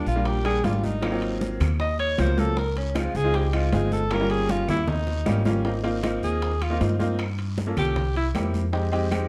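A bright alto saxophone with light vibrato and scooped notes carries the jazz solo up front in this danceable, sophisticated Afro-Cuban jazz excerpt at 156 BPM in 4/4, settling into Ab major from 5.7 s and stopping at 8.3 s. A brilliant upright piano with audible action noise and long sustain comps through rich extended chords beside a woody pizzicato upright bass, while close, dry congas ring in the background. Raspy guiro, distant claves, round low-tuned bongos and metal-shell timbales fill out the percussion, with a fill at 4.5 s in a dark, warm production.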